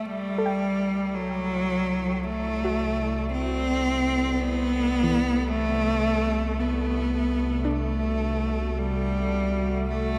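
A clear, focused single bowed cello carries the melody up front with vibrato, wrapped in shimmer reverb and diffuse delay, in this serene, luminous ambient excerpt at 55 BPM in 4/4, cut from a longer piece. A deep, round sine sub bass holds C2 beneath it from the start, and a soft, dark pluck adds chorused arpeggios in the background from 0.4 s. A warbly, nostalgic tape-like pad enters at 1.1 s and fades in on a sustained D9sus4/C chord, all set in a vast, echoing cathedral space with a long, wet reverb tail.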